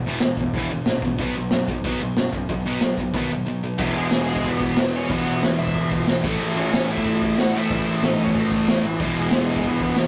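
A straight 4/4 pulse at 184 BPM drives this upbeat, rowdy punk rock cut in E major, taken from a longer piece. From the start, a raw garage drum kit sits up front with a high-tuned snare, punchy kick, hi-hat and crash, its sound gritty and saturated with a rolled-off top and a pumping small-room character. Two overdriven guitars open on riffs together: a sludgy one placed forward and a bright, picked one further back. A growly fuzz bass joins at 0.1 seconds beneath them. At 3.8 seconds the chords open out from power chords to full E and A, and a very quiet, compressed, double-tracked distorted guitar adds another riff. At 4.0 seconds a cranked stack guitar carries a melody from G#3 to F#5 in the background, all within a rough rehearsal-room recording with tube saturation and moderate ambience.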